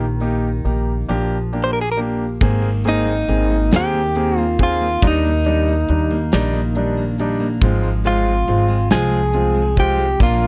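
In a slow, straight 6/8 at 46 BPM, this tender, romantic pop ballad fragment in Eb major puts a clean, compressed electric guitar melody up front, over a polished concert grand piano with audible action noise, a woody pizzicato upright bass, and a picked steel-string acoustic guitar playing arpeggios in the background with finger squeak and slapback echo. A huge arena drum kit with a punchy kick, medium-tuned snare, crash and ride enters at 2.4 s, as the harmony moves from Eb/Bb and Bb6 through Abadd9 and Ebmaj7 to Fm/Ab. The sound is a dry, close 1970s-style studio recording.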